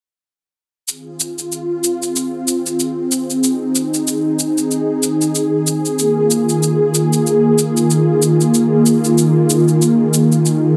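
This organic downtempo fragment, cut from a longer piece, moves at 94 BPM in 4/4 with a 16th-note swing and a peaceful, earthy mood, tuned slightly below standard pitch. A smooth, detuned sawtooth analog pad with a soft attack, long release and chorus sustains mellow chords from 0.9 seconds, shifting from Ab6 to Bb7sus4 at 6.0 seconds. Up front beside it, an electronic, tape-warmed cabasa re-recorded in a small room supplies the drum part, all under light reverb and a dense, heavily limited modern master.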